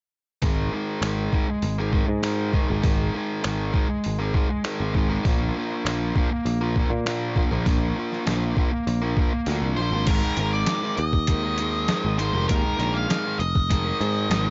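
Indie rock at 99 BPM in a straight 4/4, this short excerpt carries a wistful, jangly mood over chords moving from Absus2 to Bb and back. A crunchy overdriven guitar plays the riff up front while a picked electric bass sits underneath with a direct, growly tone. The trip hop sampler-style drum kit sounds compressed, pitched down and gritty, with a thumpy kick, a medium-tuned snare, hi-hat, crash cymbal and finger snaps, all pushed through overdrive. Kick and snare drop out from 9.5 to 10.1 seconds, and at 9.8 seconds a dark octave-fuzz lead guitar enters with the melody, its distortion trailed by analog delay. The mix is dry, with little reverb and nothing above 7.7 kHz.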